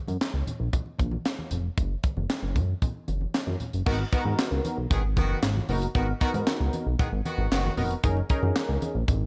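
A straight 4/4 groove at 115 BPM drives this slick early-eighties boogie funk excerpt in G# dorian, where a glossy, chorused synth bass and a tight kit with a high-tuned snare, handclaps and gated reverb run throughout over low-tuned congas in the background, until at 3.9 seconds a detuned, warbling polysynth comp and a punchy horn section with light vibrato join as the harmony moves from F# to G#m7, the horns dropping out at 7.7 seconds before a closing F#69.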